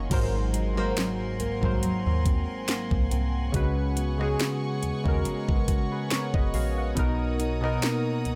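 A late-night, moody slice of contemporary R&B, cut from a longer piece, settles into a lightly swung 4/4 groove. A trap drum kit sits up front with a knocking kick, a sharp snare, rim clicks, metallic hats and crash cymbal, while a dark, digital FM bass with a fast attack and decaying tail anchors the low end. Round, detuned sawtooth analog keys with chorus and a filter sweep carry the accompaniment near the front. A full-bodied, fingerpicked dreadnought acoustic guitar plays arpeggios in the background through a digital delay, and a distant, floating string section holds soft-attack sul tasto chords up high. A very quiet electronic impact sounds from 0.1 to 3.5 seconds as the harmony moves from Ab9 to Db7sus4 and then Bmaj7, all set in a digital ambience.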